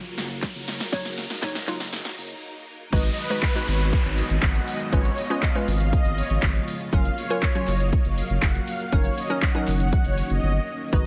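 An upbeat, summery dance-pop passage at 120 BPM in a straight 4/4 opens on a build-up, with a house drum kit playing a fill under a riser and downlifter while a glassy wavetable pluck and a lush, vintage string machine ensemble hold the F#maj7 to D#m7/F# harmony. The drums sit up front with a punchy kick and snare, layering crash cymbal, handclaps, hi-hat, shaker and snare, while a very quiet, close and dry group handclap adds a crisp human touch. A deep, saturated sub bass enters at 0.2 seconds, and after a brief break the drop lands at 2.9 seconds, where a detuned supersaw pad with a slow attack and long release carries the melody over G#m7, C#7/G# and back to F#maj7. The pluck has a crystalline, nasal bite with a filter sweep and chorus, and the strings carry a sawtooth sub octave under their ensemble chorus, with the pluck, strings, bass and pad all sidechain pumping. A digital ambience with a high-pass filter surrounds the mix, and a second short break near the end of this excerpt, cut from a longer piece, interrupts the groove.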